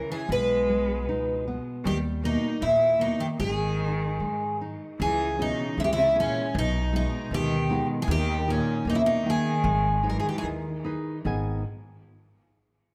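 Passionate and mournful, this fado-style ballad excerpt moves at a rubato 77 BPM in 2/4, in G# harmonic minor, with a picked twelve-string acoustic guitar carrying the melody up front in a shimmering, octave-doubled voice until 10.5 seconds. Beneath it, a rich bowed cello with vibrato and portamento sings a second line through tape echo, while a dark, fingerpicked nylon-string guitar accompanies and a woody, thumpy pizzicato upright bass on gut strings joins at 0.3 seconds. Both of these last until 11.6 seconds. Chords move from G#m/B through D# and C#m back to G#m, all set in a moderate recital hall reverb.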